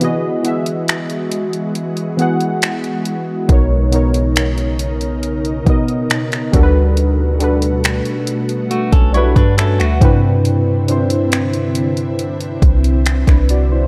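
This dreamy, smooth contemporary R&B fragment at 69 BPM opens with mellow, detuned analog keys treated with chorus, an ethereal pad with ensemble chorus and built-in reverb, and an up-front drum kit of finger snaps, hi-hat and soft kick given overdrive. After a break, a round, deep 808-style bass enters at 3.5 seconds as the harmony moves through Emaj9, Bmaj9, Gmaj9 and Cmaj9. A clean, picked electric guitar adds brief delayed arpeggios from 8.7 seconds, alongside a synth keys fill, all set in a dark production with light reverb.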